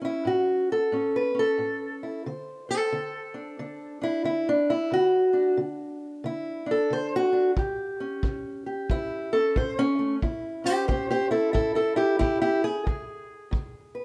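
A loping swing on the eighth notes drives this laid-back, soulful excerpt of acoustic country blues, with a fingerpicked steel-string guitar carrying the melody from the start through chords moving from A to D7(no3), A7 and finally E. The guitar has a boxy, parlour-sized tone and sits up front, while a tight, roomy kick drum with a rolled-off top and a brushed feel joins at 7.6 seconds, sounding distant despite its forward placement. Light studio reverb frames the rough, home-demo mix.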